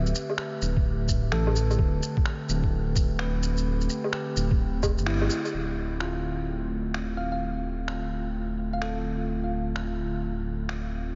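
The rhythm swings on the sixteenths in a loping future garage groove, with a compressed, pitched-down and muffled electronic shaker, woodblock and finger snaps ticking through studio reverb, and a thumpy, sampler-style kick carrying the pulse from 0.8 seconds until it drops away at 5.0 seconds, just before a band accent. Underneath, a deep, rumbling detuned saw bass sits up front, its saturated unison voices beating against each other. A warbling, nostalgic pad built from square, triangle and sine tones holds sustained chords through chorus and its own reverb, pumping against the sidechain as the harmony moves from Am7/D to Dm9. A bell-like, clean tine electric piano adds accompaniment through phaser, low-pass filter and analog delay. Late in the passage, a round, gentle thumb-piano-like pluck sounds one quiet melody note in the background from 7.2 seconds, coloured by chorus, phaser, cassette tape and delay. 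The whole dreamy, wistful, nocturnal mix is soaked in cathedral-like reverb with its top end softly rolled off, and it is cut from a longer piece.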